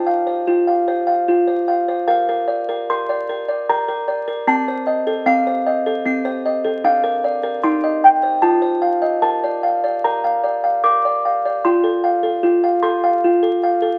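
In a 3/4 at 76 BPM with a straight feel, this dreamy, innocent classical lullaby in Bb major is carried entirely by a solo music box, whose delicate, tinkling plucked tones sit up front with a dark, smooth small-box character across a range from C4 to D6. The harmony moves between F, Bb and F7 before settling into a new section at 11.6 seconds. A wet studio reverb and the crackle of a very old 78 rpm record wrap the sound in a faded, nostalgic haze in this fragment cut from a longer piece.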